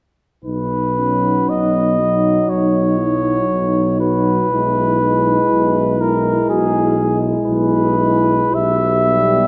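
Classical, hymn-like brass band music, tender and serene, moving in a rubato 4/4 through a short passage cut from a longer piece. A warm, punchy flugelhorn carries the melody up front over a mellow euphonium with light vibrato and a soft-attacked tuba bass, all three entering at 0.4 s, while a dark, distant French horn section adds a second line and a clear, present trombone joins the accompaniment at 1.0 s. A church reverb gives the ensemble a wet, spacious sound.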